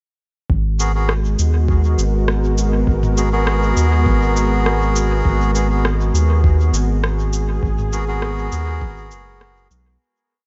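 Ambient dub with a hazy, spacious mood, this short piece settles into its groove at 0.5 seconds, when a round analog bass and a compressed, pitched-down electronic kick enter together. The bass sits up front with a deep, dark, sine-like tone and a dub-style line, while the kick is muffled and thumpy, overdriven and set in studio reverb, and it drops out at 8.9 seconds. A vintage analog pad with a smooth, warbling, detuned sawtooth sound and chorus holds sustained, slowly shifting chords low in the mix. A reedy, breathy melodica, close-miked and nasal, adds sparse chord stabs that move one shape in parallel, trailed by dub echo. Quieter still, a sparse electronic kit of cabasa, rim clicks and low toms echoes through studio reverb and dub echo, and the lightly reverberant, rolled-off mix fades out from 6.8 seconds.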